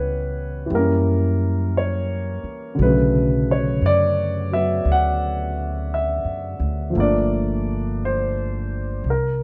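A warm grand piano and a woody, dark pizzicato upright bass open together, both up front, setting a tender, late-night mood for this slow jazz ballad at 58 BPM with a gentle swing feel. The piano carries the accompaniment through a C#m7b5 and F#7b9 into a long stretch of Bm7 before settling on Gm7 at 7.0 seconds, while the steel-strung bass anchors the low end. The sound has light reverb and the worn, warbling pitch drift of old cassette tape, adding a nostalgic haze to this short fragment of a longer piece.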